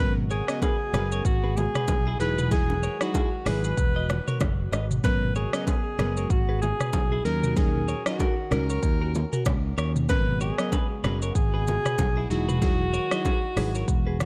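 A breathy alto saxophone with light vibrato carries the melody from a distant, roomy place, its lines trailed by delay, over a hypnotic, sultry afrobeats groove at 95 BPM in G# minor with a swung sixteenth feel. Glassy digital keys with chorus and a hollow, flute-like pad pumping in the background fill out the G#m11, Emaj9 and D#m7 harmony. A growly, up-front picked bass, an electronic drum kit with a deep kick, metallic hats and 12-bit sampler grit, a twangy clean guitar riff with delay, and saturated bongos and congas entering at 0.6 seconds drive this short cut from a longer piece.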